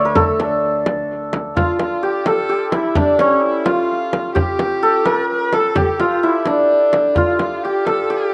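Persian modal ensemble music in D avaz esfahan, soulful and hypnotic in a straight 6/8 at 86 BPM, opens with a shimmering, ringing santur melody up front over a brief airy, sul tasto cello drone on D2 that lasts until 1.6 s, while a deep frame drum struck with hard hands and a soft-handed tombak keep time from 0.2 s, and a clear, distant kamancheh with vibrato and portamento enters at 1.6 s as a second line, the santur, frame drum and kamancheh each carrying slapback echo inside a light reverb in an open-air setting, in a fragment cut from a longer piece.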